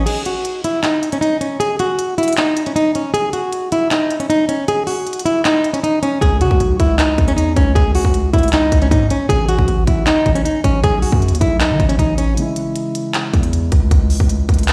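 A half-time trap groove drives this menacing, hard-hitting hip hop piece, cut from a longer track, with a produced electronic kit of hard-clipped kick, crisp hi-hats, handclaps and crash cymbal sitting up front. A fingerpicked acoustic flamenco guitar carries the melody in a narrow range, its warm tone trailed by tape echo, until about 12.3 seconds. The hard-hitting 808-style bass arrives properly at 6.2 seconds, a punchy, heavy sine tone with a noise layer, fast attack and decaying tail. Near the close, at 12.3 seconds, a dark grand piano returns to carry the accompaniment with a mellow, intimate sound, audible action noise and long sustain. The harmony moves from an open start to A with a flattened fifth, then B, landing on C# minor. The whole mix plays as if through a big sound system in a bare stone room, with light reverb and digital ambience.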